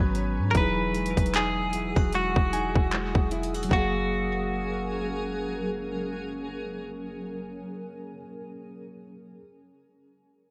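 The excerpt opens with a twangy, direct-recorded clean electric guitar carrying the melody up front. Digital delay trails its picked, compressed notes. Around it, a mellow tine electric piano plays accompaniment, a cloudy granular pad holds blurred, evolving chords in its own reverb, and a fingerpicked nylon-string guitar sits in the background playing arpeggios. Underneath, a deep, boomy 808-style bass with a sine tone anchors the low end, while a crystalline FM bell adds texture high above through chorus and delay. This is dreamy, tender contemporary R&B in F# major at 76 BPM, with a swung sixteenth-note feel. The chords move from G#m11 to Emaj9, then settle on F#maj9 at 3.7 seconds. An overdriven trap kit with a hard-clipped kick, metallic hi-hats and handclaps punches in at 0.2 seconds and drops out at 3.9 seconds, all under a worn, warbling cassette-tape character with light digital ambience.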